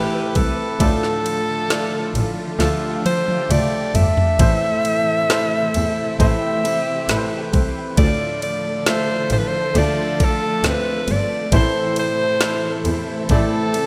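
A bright, 1980s-style digital production bathes this melancholic pop ballad excerpt in moderate plate reverb, with a straight 4/4 feel. Up front, a solo alto saxophone carries the melody in a jazz style, its notes scooped and softly attacked, shaded with vibrato. A clear concert grand piano with a deep, open low end accompanies throughout, while a fingerpicked jumbo steel-string acoustic guitar plays full-bodied arpeggios in the background, its finger squeak audible. At 0.4 seconds a bowed double bass, one player with portamento and expressive vibrato, enters alongside an electronic R&B kit of kick, snare, ride and toms, whose knocking kick and woody snare sit up front with a tape-warm tone and gated reverb, and the drums play a fill from 2.6 to 4.4 seconds. Beneath them, a studio string section holds warm, smooth-topped sustained chords in the background, lending the piece its emotional glow.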